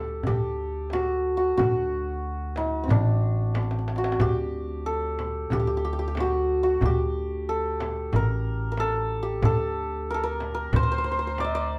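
Festive yet stately, this Persian modal ensemble piece moves at 92 BPM in a straight 4/4, set in the D dastgah homayun with tuning at A4 = 441 Hz. Up front, the hammered santur carries the melody with a shimmering, ringing tone, while a pizzicato upright bass with steel strings supplies a woody, dark foundation beside it. The tombak sits in the background, deep and struck with hard hands, and the small frame drum adds a bright edge played with soft hands; both drums carry a small-room character. A drum fill arrives between 3.5 and 4.2 seconds. The band plays live together in one room under moderate studio reverb, and the whole passage is cut from a longer piece.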